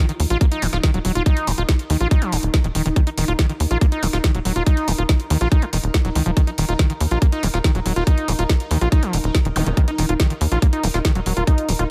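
Intense and hypnotic, this psychedelic trance excerpt drives along at 141 BPM, with a tight, up-front electronic kick and a woody snare and bright hi-hats from a layered drum kit anchoring a punchy, nasal sequencer bass, while a squelchy, gritty acid bass riff pumps with distortion and tape echo over a very quiet pulsing gated texture of mellow sustained chords, a dark, warbling lo-fi pad, and a brief electronic zap at 9.6 seconds, all in a dry mix.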